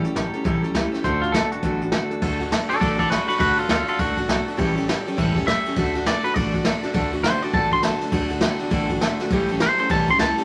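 Rockabilly at an upbeat, retro 203 BPM in D major, with a swung eighth-note feel. The brushed drum kit sits up front with dark cymbals and a boomy kick, alongside a bright, full-bodied dreadnought acoustic guitar picking A7 and D, while a thumpy gut-string upright bass stays in the background under a moderate club reverb. A twangy, clean electric lead enters at 1.0 seconds and takes a solo from 2.2 seconds, and a slightly broken-up guitar through a small old amp plays a low riff at the start and returns at 6.9 seconds in this fragment cut from a longer piece.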